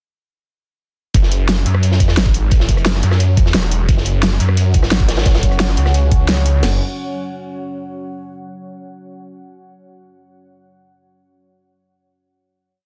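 Dark technical drum and bass at 175 BPM in 4/4, this short, complete piece feels mechanical and dark from its drop at 1.1 seconds. A snarling saw bass sits up front, aggressive and growling, its detuned unison tone distorted and overdriven, pumping against the sidechain as it cuts chopped phrases between E1 and F#2. Three drum kits are layered: an electronic drum and bass kit with a knocking kick, cracking snare and crash in a broken-beat pattern, a tight electronic dubstep kit with a huge snare, bright closed hats and rim clicks, and a gritty, saturated acoustic breakbeat looped with edits, filtered of its top end and tucked in the background. At 4.5 seconds a deep, moody pad fades in with a slow attack, its chorused, reverberant chords spanning F#3 to F#5 and pumping beneath the drop. The drop gives way at 6.6 seconds to a final chord, all within a dense, heavily limited digital mix.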